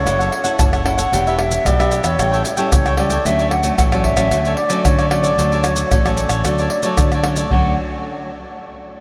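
A bright, airy baroque flute with a woody, straight, tongued tone carries the melody through an analog delay in this joyful, sunny samba and choro piece, cut from a longer work. Crisp picked cavaquinho and a fingerpicked classical nylon-string guitar, its fresh strings showing finger squeak, supply the accompaniment over a warm, direct, amped fingered electric bass. Maracas, surdo, pandeiro and tamborim sit up front, close and dry with hard hands and a tight surdo, all within a dreamy mix soaked in huge ambient reverb, and a new section arrives at 7.5 seconds before the guitar, the last part playing, stops at 8.3 seconds.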